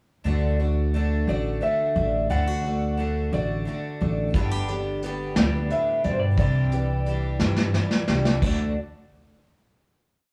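Nostalgic and hopeful, this short indie folk piece moves at a slow 59 BPM in a straight 6/8, set in D mixolydian and moving from D through G and Cadd9 before settling back on D for a final chord that rings out from 8.4 seconds. A bright, shimmering twelve-string acoustic guitar strums sixteenths in open chord shapes with an octave-doubled sparkle, while a fingerpicked archtop adds a rolling arpeggio, complete with audible finger squeak. Up front, a woody, growly upright bass plays a dotted pizzicato figure beneath them. From 1.3 seconds an electric guitar through a small old amp carries a motif-based melody in sentence-like phrases, its slightly broken-up, lo-fi tone colored by harmonic tremolo. A vintage brush kit with dark cymbals and a tight kick joins at 4.3 seconds to build the arrangement, laying down a smooth 6/8 groove and a fill just before the last chord, all captured as a band playing live in one room with light reverb.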